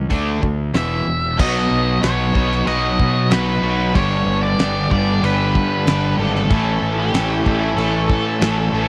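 Two overdriven semi-hollow guitars, one bright and one in the background with harmonic tremolo, open this driving, swaggering classic rock excerpt alongside an up-front fuzzed, fingered bass and a dry, damped 70s drum kit with a fat snare, tight kick and dark cymbals, all set in a small room with light reverb, as a distorted octave-fuzz lead guitar carries the melody from 0.8 s to 6.1 s, a very quiet, full tonewheel organ holds sustained chords through slow rotary chorus vibrato from 1.0 s, and an overdriven slide guitar adds a second line in the background at 6.2 s.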